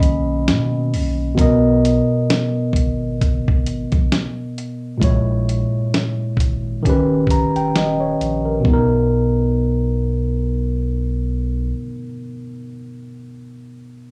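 Cosy and dreamy, this fragment of a longer lo-fi hip hop piece sits at a relaxed 66 BPM in 4/4 with a gentle swing on the sixteenths, set in B major and tuned slightly below standard pitch. A worn, slightly out-of-tune tine electric piano carries the accompaniment up front, sounding clean through a combo amp and softened by a low-pass filter. It opens with a brief solo before moving through Bmaj7, A#m7b5 and D#7b13 and returning to Bmaj7. Beneath it, a deep, round sine sub bass adds a sustained foundation with a fast attack. A dusty, sampler-style soul drum kit sits up front, compressed and gritty with vintage 12-bit character, a thumpy kick, a fat snare and hi-hat, and it drops out at 8.9 seconds. The bass follows at 11.7 seconds, leaving the electric piano to close at 14.1 seconds in a light reverb.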